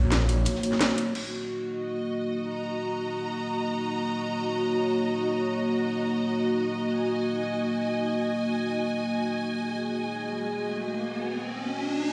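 Aggressive and mechanical, this cut from a longer dark technical drum and bass piece in Eb minor hits a drop at the top, where a snarling, growling distorted saw bass on Bb1 and a cracking electronic kit with metallic hats and crash ride up front over a gritty, saturated breakbeat kit in the background. After a break and a band accent at 0.8 seconds, the drums and bass fall away, leaving a deep, moody, wave-folded analog pad with chorus and a rich, bowed symphonic string section with vibrato to carry the free-time passage from 1.2 seconds. A riser enters at 10.4 seconds, all washed in a lush hall reverb and the echo of a bare stone room.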